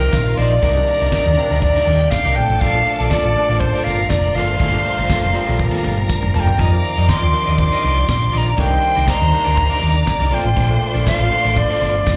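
A breathy alto recorder carries the melody from the first moment of this driving, danceable disco passage in G minor at 121 BPM, its soft attack, vibrato and rolled-off highs sitting up front with a slapback echo. Beneath it a dark, round hollow-body electric bass, fingered and amped, anchors the groove, while a damped 70s drum kit with a fat snare, tight kick, hi-hat, toms and handclaps keeps a dry, straight 4/4 pulse, with a drum fill between 5.6 and 6.6 seconds. A barky tine electric piano, lightly overdriven through a combo amp, and a slightly broken-up, twangy picked electric guitar in the background fill out the accompaniment, both with slapback echo. A clear, focused studio string section plays a bowed second line, and a second, distant string section adds lush, very quiet sustained chords. A jingly tambourine enters at 0.1 seconds. The harmony moves through F7sus4, Cm9, Bbmaj7 and Gm9, and the whole cut, taken from a longer piece, sounds like a live gig heard through the venue's PA, with light club reverb.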